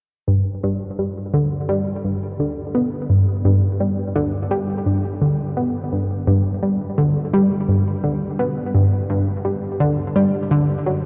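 Drenched in a huge ambient reverb with a 7.8-second tail, the recording has a dark, warm production, and lossy compression artefacts cling to its edges. This is a luminous, expansive ambient fragment in G major, cut from a longer piece, moving at 85 BPM in a straight 4/4. A lone analog pluck carries the music from 0.3 to 11.0 seconds, sitting up front in the low register between G2 and B3. Its round, nasal tone blends sawtooth and square waves with a noise layer and a sub octave beneath, and each note has a fast attack that decays away. Chorus and delay thicken the pluck, while a filter sweep colours its tone as the reverb stretches every note into a glowing haze.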